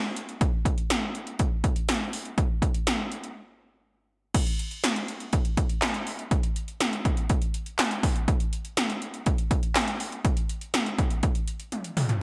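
A bright, wistful pop excerpt in a straight 4/4 groove, carried entirely by an 80s electronic pad drum kit that enters at 0.2 seconds and sits up front with a punchy kick, gated snare and toms treated with gated reverb, metallic hi-hats, handclaps with a short room, and crash cymbal. The kit has a tape-warm, analog edge within a light reverb and bright 1980s-style digital production. A break at 3.4 seconds leads into a second section, which closes with a drum fill at 11.7 seconds.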